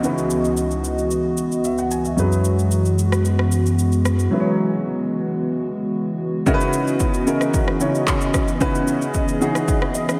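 Late-night and soulful, this amapiano excerpt moves at 112 BPM in C# minor. A polished grand piano with analog chorus accompanies a hollow, airy pad that pumps against the punchy, overdriven deep house kit of handclaps, kick, rim click and shaker, while a downlifter sinks in the background for the opening 2.2 seconds. A round sine sub bass holds F#2 from 2.2 to 4.3 seconds before a break, the chords move from C#m11 to F#9sus4 and back, a piano fill closes things out near 9.7 seconds, and the whole mix is soaked in a lush hall reverb for a dreamy finish.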